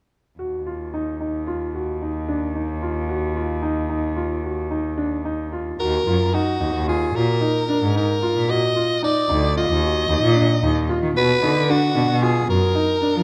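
A clear, slightly boxy baby grand piano plays arpeggios over a bowed, gut-string cello bass line with light vibrato and a nasal, period-style tone, opening this hypnotic, pensive piece of contemporary chamber music at 112 BPM in an uneven 5/4 metre and E-flat harmonic minor. At 5.8 seconds a raspy, gritty soprano saxophone takes up the solo melody with vibrato and an edgy, pop-style presence, and the harmony moves from E-flat minor to B minor at 11.2 seconds. A moderate scoring-stage reverb gives the passage, cut from a longer piece, a spacious setting.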